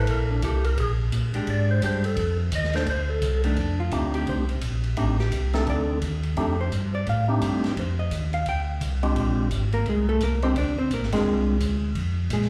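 A round, lightly overdriven tonewheel organ bass sits up front with chorus vibrato and a slow rotary speaker, anchoring this greasy, swinging soul jazz organ trio at 172 BPM in F mixolydian, cut from a longer piece. A flute-like second organ with key click, fast rotary and slapback echo carries the melody and solos until 3.6 seconds, after which a dark, picked hollow-body electric guitar with its own slapback echo solos to the close at 12.5 seconds, while the organ melody stops at 11.6 seconds. A distant, roomy big-band drum kit with a boomy kick swings underneath, and the trio comes through a club PA with light reverb.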